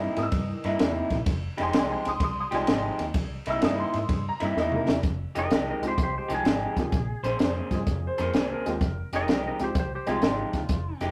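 A rough rehearsal-room recording with tube saturation frames this smoky, brooding electric blues shuffle fragment, where a slightly broken-up guitar riff through a small old amp, a jangly, detuned honky-tonk piano, a round, foam-muted bass and a dark, punchy cocktail drum kit (entering at 0.2 seconds and playing a fill at 4.6 seconds) carry the groove until a bright, twangy lap steel melody arrives at 5.4 seconds, briefly joined by a second upright piano line that sounds clear and woody.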